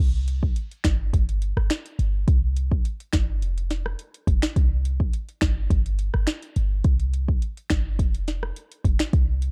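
Hypnotic and tough, this dancehall groove at 105 BPM in a straight 4/4 rides on a clean, boomy 808-style bass that opens the clip at 0.0 seconds, its sine-like tone striking fast and decaying in the low register between F1 and C2. From 0.3 seconds an electronic afro-pop drum kit joins up front, with a deep kick, sharp snare, metallic hi-hats, rim clicks and finger snaps. A digital ambience and dark production shade this short section cut from a longer piece.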